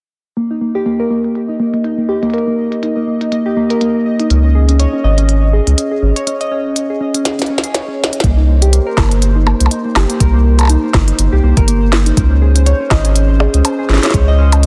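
IDM at 122 BPM in 4/4 with a light 16th-note swing, intricate and eerie, where a ringing, harp-like synth pluck plays up-front arpeggios with chorus and digital delay under a filter sweep, over a glitchy kit of clicky hats, tiny snare and percussion blips roughened by overdrive and low-pass filtering, while a pulsing, detuned gated texture drifts in the background. A round, dark analog bass with tube saturation enters at 4.3 seconds, and after a break and drum fill, a deep electronic kick joins at 8.2 seconds as the harmony moves from suspended chords to Cm7 and Db5. The excerpt, cut from a longer piece, sits in light reverb with a dense, heavily limited modern master.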